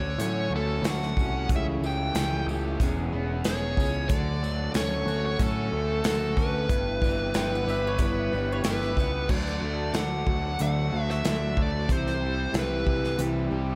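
A big arena sound with a roomy stage reverb frames this nostalgic fragment of folk and heartland rock at a straight 92 BPM in 4/4, where a smooth, up-front overdriven lead guitar with slapback echo carries the melody over a boxy parlour steel-string acoustic picked quietly in the background, a crunchy double-tracked electric riff with its own slapback, faint rotary-speaker tonewheel organ chords with key click, a punchy, direct picked electric bass, a polished, airy country drum kit with dark cymbals and a tight kick, and a jingly, very quiet tambourine, while a bright bowl-back mandolin slips in a second line from 7.4 to 9.3 seconds as the chords move from Dmaj7 toward a closing D and C.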